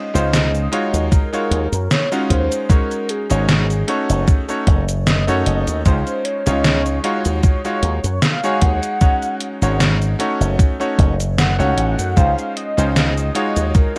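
Woozy and nostalgic, this vaporwave excerpt drifts over a lightly swung groove as a velvety, detuned synth lead carries the melody with chorus, vibrato and analog delay, while a clear, clangy electric grand piano with subtle chorus fills in the lush Dbmaj9, Ebm11, Ab7sus4 and Gbm6 changes. A bright, punchy slap bass with an envelope filter sits up front beside a gated 80s drum machine playing cabasa, hi-hat and an overdriven gated-reverb snare, and a thumpy, overdriven electronic kick joins at 1.1 s. The dry, rough home-demo mix has a cassette-tape character.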